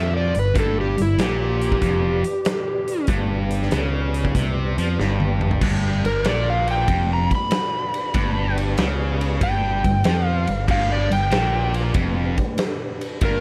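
A studio-reverb sheen surrounds this gritty, raunchy blues rock and southern rock excerpt in G mixolydian, swinging at 95 BPM in 4/4. A dark, overdriven slide guitar carries the melody over a double-tracked, distorted guitar riff and a growly, punchy picked bass, while a soft, flute-like tonewheel organ holds chords in the background through a slow rotary speaker with chorus vibrato and key click. A big, smooth rock drum kit with a rolled-off top enters at 0.3 s, and its fill leads into the slide guitar solo at 5.6 s.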